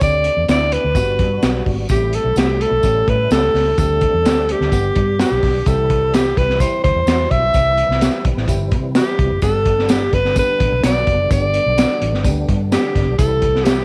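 An uplifting 1960s-style soul groove at 128 BPM in G major opens with a forceful, vibrato-rich alto saxophone carrying the melody up front over a crunchy, saturated breakbeat drum kit with a punchy kick and high-tuned snare, a round, foam-muted electric bass and a woody, slightly detuned upright piano. In the background, a fat, lightly overdriven tonewheel organ holds sustained chords through a slow rotary speaker with chorus vibrato and key click, while a jingly tambourine sits distant. The harmony cycles through D7sus4, Gmaj7 and Am7 before shifting to a broader C and G passage at 5.7 seconds, all within a small room with light reverb.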